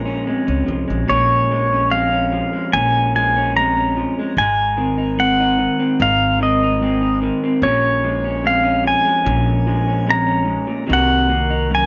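Reflective and melancholic, this excerpt of an acoustic folk-pop ballad moves at a slow 74 BPM in Bb minor, drifting through Bbm7, Ab7 and Cm7b5 chords. Up front, a twangy, compressed pedal steel guitar carries the melody with slide, fingerpicks and volume swells, beside a dark, slightly broken-up electric guitar through a small old amp, while a thumpy, gut-strung upright bass is plucked underneath. Light reverb and a top end that stops at 7.5 kHz give the recording a dusky, intimate sound.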